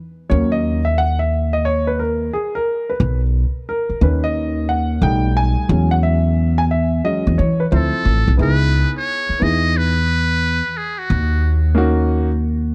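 Cool, smoky jazz-hop cut from a longer piece, with a swung groove where a dark, mellow grand piano with audible action noise and a woody pizzicato upright bass sit up front over a dark, warm, lightly reverberant production, until a buzzy, thin metal-muted trumpet enters at 7.7 seconds with scooped notes and light vibrato for a brief jazz solo.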